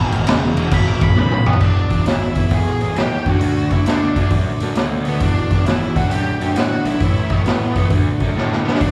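A boomy, saturated garage drum kit sits up front in this swaggering, gritty blues rock and southern rock clip with a swung feel. The kit enters a moment after a dark octave-fuzz lead guitar with slapback echo that solos through the opening 1.6 seconds, a double-tracked crunchy overdriven rhythm guitar riffing in the background with slapback echo, and a growly fuzz picked electric bass, the band heard live through a club PA with drum fills near 1.2 and 8.4 seconds.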